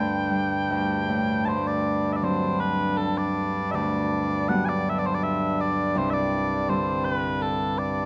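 Nostalgic and tender, this short excerpt from a Celtic slow air moves in a rubato 3/4 at around 75-83 BPM. Mellow small bagpipes carry the sweet, continuous melody up front with vibrato, while a fingerpicked Celtic harp rings softly beneath, moving from Dsus4 and D5 through D7 at 1.5 seconds to Gmaj7/D and Csus2. A moderate recital hall reverb wraps the dark production in a gentle, spacious glow.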